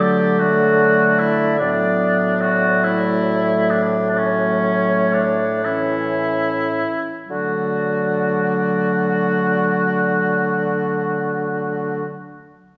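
Lyrical and warm, this slow romantic movement for wind quintet moves in a rubato 12/8 at roughly 34-53 BPM in D major, easing as it slows through the opening 7.3 seconds before settling onto a new phrase that returns home to the tonic. The airy silver flute carries the melody with a crisp attack from the background, while the oboe's second line, with light vibrato and a soft attack, sits up front beside the close-miked bassoon bass. The clear clarinet and roomy French horn fill in the accompaniment, with the whole ensemble heard from further back in a reverberant recital hall.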